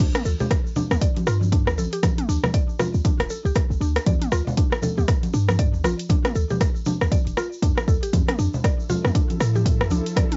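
An afro house groove with a hypnotic, spiritual mood opens at once on a punchy, overdriven electronic kick and a deep house drum kit of crash, hi-hat, rim click and toms, both up front with small room ambience and a cassette-tape grit, while ringing congas, a distant grainy tube shaker and a deep, boomy 808-style bass pumping under the kick fill out the swung pulse. Above them a woody, round, mallet-like synth pluck spins arpeggios through chorus and tape echo, pumping with the beat. The harmony moves to Fmaj7 around 8.1 seconds, and shortly after, near 8.8 seconds, an ethereal, airy pad drifts in far in the background with tremolo and built-in reverb, all caught in a lo-fi home cassette sound in this short cut from a longer track.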